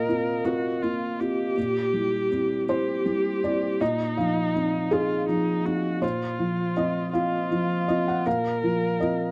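A felt-dampened upright piano and a viola played con sordino sound together from the first moment in this brief, longing neoclassical fragment, moving in a rubato 6/8 at about 54 BPM. The piano is mellow, intimate and close, with its action noise audible beneath the thick felt. The single bowed viola adds a veiled, dark line with vibrato over a moderate studio reverb, while the harmony drifts from Bbsus2 through C7/Bb and Fm7/Bb before settling back on Bbsus2 at 6.0 seconds.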